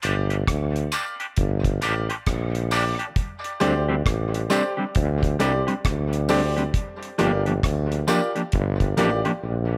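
Deep and heavy, this slow dub reggae excerpt moves at 67 BPM in G minor with a swung sixteenth feel, cycling from Gm7 through D7sus4 and back. A vibrato-laden tuba carries the bass up front, joined by a dry, tight-kicked reggae drum kit with hi-hat and rim click, while a dark, clean fingered electric guitar and a woody, boxy upright piano playing stabs are both filtered and sent through dub echo. Tambourine, woodblock, maracas and group handclaps sit close and dry in the background with their own dub echo, and a brief break arrives at 9.4 seconds as the tuba rings on alone until 9.8 seconds in a small, lightly reverberant room.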